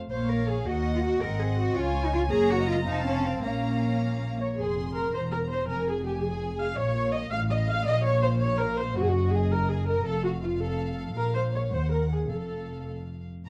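A quick classical-period movement for string orchestra in 6/8, this excerpt moves at 109 BPM in dotted quarters with a rubato feel, its stormy, restless mood set in B-flat minor before turning to F minor at 4.6 seconds. The double bass section anchors the bottom from 0.0 seconds, dark and up front with a smooth top, while the cellos join it on the bass line with a gentle, lightly vibrated tone. Above them, the violas supply a shadowy, forward accompaniment, and a second violin line fills the middle with a soft attack. The first violins carry the melody high in their range, sul tasto and singing with vibrato, though they sit quieter than the lower strings. Every section is bowed sul tasto and close, giving an intimate chamber sound, wrapped in a moderate large-studio reverb with a dusky production and chords that drive through minor and dominant harmonies to close on F.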